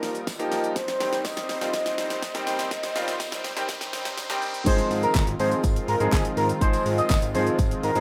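Summery and upbeat, this dance-pop excerpt moves at 123 BPM in Ab major, opening with a build-up where a mellow, horn-like synth lead with chorus, phaser and tape echo sings over a clear concert grand piano and a soft, smooth supersaw, both pumping to the sidechain, while a punchy, up-front electronic drum kit with handclaps, shaker and crash plays a fill alongside a faint jingly tambourine and a very quiet riser from 1.2 s. At 4.7 s the drop arrives: a bold, retro octave-doubled lead takes the melody and a fat, wave-folded analog bass enters, saturated and thick, both pumping with the rest of the groove. The sound has a rough home-demo character, with light reverb and digital ambience.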